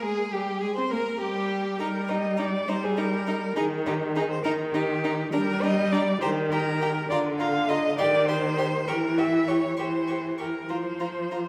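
From the first moment, a string quartet plays together in this graceful, spirited classical-period movement in Eb major, a quick 6/8 at 68 BPM cut from a longer piece: a clear, focused first violin carries the melody with vibrato from the background, a smooth, even second violin sings a second line, and up front a warm viola adds expressive accompaniment with soft attacks and portamento over a rich cello bass, each part bowed by a single player in a reverberant recital hall with a 1.6-second decay.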